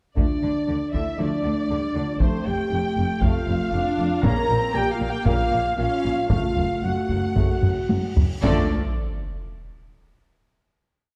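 Cinematic, epic orchestral film score with a dark, heroic mood, in which two bowed violin sections carry the expressive, vibrato-rich tune at the octave, doubled by trumpets that also punch out stabs, over mellow French horn and trombone chords, a driving cello ostinato doubled by double basses, and a lush viola counter-melody entering at 1.2 s, while a close, hard-stick taiko ostinato and a drum fill build alongside a huge cymbal swell, and an impact with a sub drop lands the final chord at 8.4 s in a reverberant scoring-stage space.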